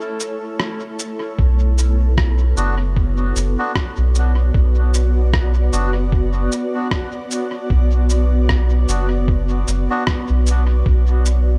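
This ambient dub excerpt opens on a cloudy, evolving granular pad holding sustained chords on A, its slow attack and long release blurred further by its own built-in reverb, while a muffled electronic cabasa and rim click, pitched down and trailed by dub echo, enter at 0.2 seconds. At 1.4 seconds the break gives way as the harmony moves to B minor and a deep, round sub bass arrives up front, its soft triangle-and-square tone sustained beneath a thumpy, compressed kick drum that sounds re-recorded in a large room. The tempo sits at 76 BPM in 4/4 with a lazy 16th-note swing, giving the meditative groove a gentle sway. From 2.6 seconds a reedy, breathy melodica adds quiet stabs in a narrow middle range, its nasal, plastic-cased voice thrown into dub echo. The overall mix is dry, letting the deep bass anchor the airy layers above it.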